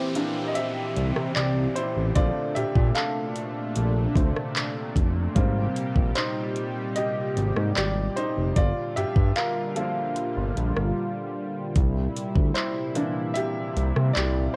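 A dry home recording with a cassette character opens this short excerpt of contemporary R&B at 75 BPM in a straight 4/4, its mood longing and sensual. A clear, intimate baby grand piano carries a solo across the whole passage, up front with audible action noise and short sustain, moving through C7, Bbmaj9, Abmaj9 and Gm7 before returning to C7. Beneath it, a warm analog pad of detuned sawtooth holds sustained chords with slow attack and long release, thickened by chorus and pumping against the sidechain. A trap drum kit, processed through cassette tape, enters at 0.2 seconds with a knocking kick, metallic hats, handclaps and rim clicks, while a saturated, smooth synth bass blending sawtooth and square waves joins at 1.0 seconds with a fast attack and vibrato. An electronic downlifter sits in the background for the opening 5.4 seconds, and a brief break falls between 11.0 and 11.8 seconds.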